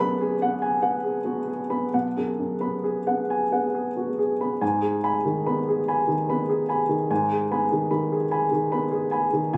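Neoclassical minimalist piano, melancholic and wistful, unfolds in a rubato triple metre across this short fragment cut from a longer piece. A dark baby grand plays alone from start to finish, ranging from B1 up to B5, its mellow, intimate tone sitting up front with audible action noise and a short sustain. The sound is boxy, caught on a phone in the room with a club reverb and a light reverb overall. The harmony opens on G#m7/B and settles onto G#m at 4.6 seconds, where a second section begins and carries on to 9.6 seconds.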